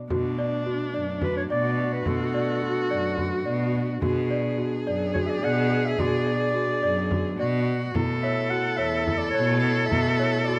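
Hypnotic and pensive, this contemporary chamber excerpt in 7/8 opens with a bowed cello giving a rich, up-front bass, a smooth viola carrying a second line with vibrato, a background woodwind section holding sustained chords, a frame drum played with soft hands, and a bell-like, slightly out-of-tune celesta rippling arpeggios, before a mellow, distant clarinet enters with the solo melody at 1.2 seconds, all under light reverb as the harmony moves from Bm7 to A at 8.0 seconds.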